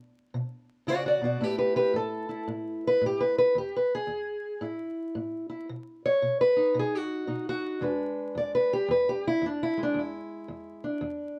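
A boxy, parlour-toned fingerpicked steel-string acoustic guitar plays alone and up front from the first second, setting a rollicking yet laid-back acoustic country blues groove at 112 BPM with a swung feel in E mixolydian. The guitar ranges from E2 to D5, moving through B5 and A5 chords, a brief chordless moment at 3.6 seconds, and landing on an E7 at 7.8 seconds as the phrase repeats. A dark production with moderate studio reverb and a layer of vinyl crackle gives this short cut from a longer piece an aged, intimate character.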